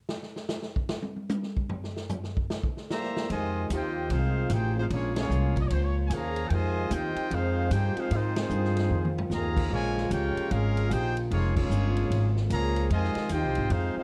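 A roomy, distant swing drum kit with a boomy kick opens this brassy, sultry big-band excerpt in F minor at 150 BPM, soloing until the clear trumpet section takes the melody over a dark trombone second line, soft-edged trombone chords in the background and a woody, thumpy upright bass up front, with band accents at 5.1, 8.3 and 11.5 seconds and a drum fill at 8.9 seconds under light reverb.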